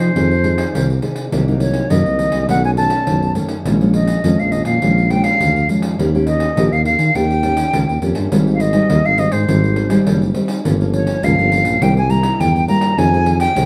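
An airy, vibrato-laden silver concert flute with rolled-off highs, slapback echo and plate reverb carries the yearning melody up front in this lively samba and choro excerpt at 103 BPM in F minor, over a smooth-topped dark tuba bass, a thumb-plucked nylon-string guitar in the background and a jingly, distant pandeiro in a large room, within a dusky, warm production with light reverb.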